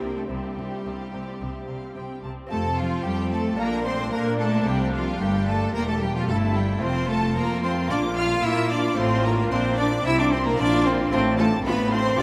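A festive, brilliant baroque-style concerto movement in F major at 111 BPM opens with a rich solo cello carrying the melody beside a focused chamber violin section soaring high above, while bright, lush symphonic violins add a second line, a delicate fingerpicked gut-string lute and background violas fill in the harmony, and cellos with portamento join distant double basses in a soft-attacked bass, all bathed in a huge, wet reverb that suggests a vast, echoing space, with the music moving into a new section at 2.5 seconds.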